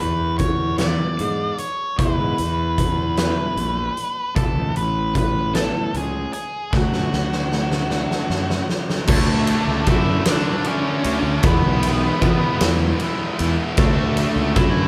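A huge arena drum kit sits up front, its fat snare, boomy kick and bright cymbals filling a big room, with a drum fill from 6.7 to 9.1 seconds carrying the music into its heavier second half. This short, bittersweet and cathartic cut of quiet-loud alternative rock moves slowly at 51 BPM in a straight 6/8. A dark octave-fuzz lead guitar carries the melody up front throughout, while a growly, punchy fuzz bass underpins it, and a twangy, compressed twelve-string electric guitar plays clean phaser-tinged arpeggios in the background until 8.7 seconds. At 9.1 seconds a high-gain distorted guitar and a thick fuzz guitar enter together on a riff, both set back in the mix. The chords move from E5 through Aadd9 and D, then to E and back to D, and the band sounds as if it is playing live in one room, with a moderate large studio reverb around it.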